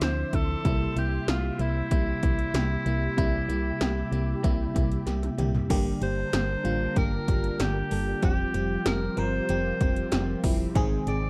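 A dry, close studio sound with digital ambience frames this nostalgic, uplifting 1980s-style pop excerpt at 95 BPM, where a bright alto saxophone with scooped notes carries the melody over glassy, bell-like FM electric piano with chorus, a round, dark FM bass, mellow string-machine cellos with phaser and ensemble chorus in the background, and punchy electronic pad drums with gated reverb on snare and toms and metallic hats, which play a fill from 5.1 to 5.7 seconds as the chords move from Dm9 and C7 toward Gm, Fsus2 and Ab.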